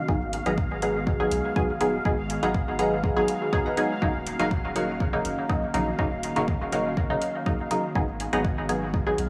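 Cavernous and hypnotic, this dub techno passage, cut from a longer piece, moves at 122 BPM in a straight 4/4, with its chords shifting from Abm7 to Ebm7 and back at 8.0 seconds. Up front sits a muted, deep sawtooth chord stab with a detuned filter pluck, coated in chorus, phaser, cassette tape colour and dub echo, while a second, quieter stab riff enters at 0.5 seconds in the background, higher in range and bathed in lush chorus, phaser and echo. An overdriven, layered kick drum drives the groove alongside metallic analog hi-hats, and a soft, round sub bass anchors the low end. Behind them, an airy, breathy pad holds mellow sustained chords with a moving notch over its noise layer, and a bubbling, resonant texture with random filter steps hovers on a single high note inside its own reverb. The pad, texture, bass and both stab parts pump against the kick, and a light small-room ambience frames the whole passage.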